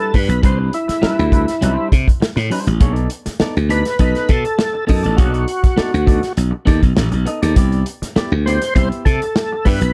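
A gritty, overdriven tonewheel organ carries the melody from the start, its chorus vibrato, key click and slow rotary speaker up front. A twangy, compressed clean electric guitar with plate reverb plays accompaniment, joined almost at once by a growly, punchy slap bass and a tight soul drum kit with a rolled-off top. This cut from a hypnotic, cool funk piece at 101 BPM moves from Cmaj9 to B7#9 at 2.8 seconds and back to Cmaj9 at 7.6 seconds, in a dark, dry production.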